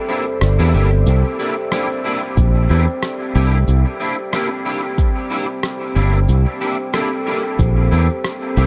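A deep, moody pad holds a sustained C7 chord from the very first moment, its detuned sawtooth and sub-octave layers softened by chorus and its own reverb. Alongside it, a metallic, ringing vibraphone plays arpeggios with slow motor vibrato and dub echo, sitting in the background in a boxy small room. This peaceful, hazy ambient dub excerpt moves at 92 BPM in 4/4 with a light swing on the 16ths, set in C mixolydian. A slightly broken-up, twangy electric guitar adds picked stabs through ensemble chorus and dub echo. At 0.4 seconds a bright, punchy fingered electric bass arrives up front, together with a muffled, overdriven rim click and cabasa, pitched down and sent into echo. A layered, produced electronic kick joins at 2.4 seconds and stops at 7.7 seconds, all within a dark, warm production of light reverb and digital ambience.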